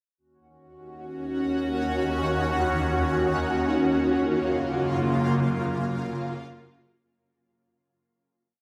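Drenched in a huge, dreamy reverb with an 8.3-second tail, this short, complete hip hop piece in free time feels spacious and melancholic. A single shimmering ambient pad plays alone from 1.0 s to 7.0 s, spanning Eb2 to Gb4 and sitting up front in the mix. Its ethereal, bright tone carries an octave-up shimmer and a granular grain, with a slow attack, sustained body and long release, colored by chorus, phaser, analog delay and its own built-in reverb. Set in Eb minor and tuned to A4 = 439 Hz, the harmony moves from Ebm7 to Gbmaj7 at 3.6 s. A fade-out begins at 5.3 s and carries the pad to the close.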